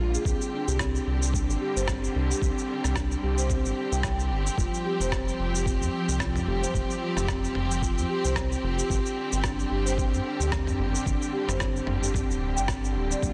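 A swung 16th-note groove at 111 BPM in 4/4 drives this warm, mystical organic downtempo excerpt, where a gritty, overdriven sampler-style soul kit of cabasa, rim click and toms enters at 0.1 s and a thumpy overdriven electronic kick joins at 0.3 s, beneath a deep, dark analog bass, mellow soft-mallet marimba arpeggios with a filter sweep and digital delay, and a lush, distant string section holding vibrato-laden sustained chords with sidechain pumping over Csus2, Fsus2 and Gsus4, all set in light reverb with a dense, heavily limited master.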